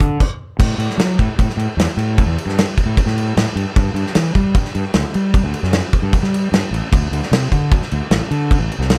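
A fuzzy, overdriven fingered electric bass sits up front alongside a loose, acoustic indie drum kit with dark cymbals, a tight kick and a pumping small-room sound in this wistful, intricate math rock and midwest emo excerpt at 152 BPM in straight 4/4, tuned to A4 = 438 Hz, where a brief stop from 0.2 to 0.6 seconds gives way to the main section in a dry, close mix.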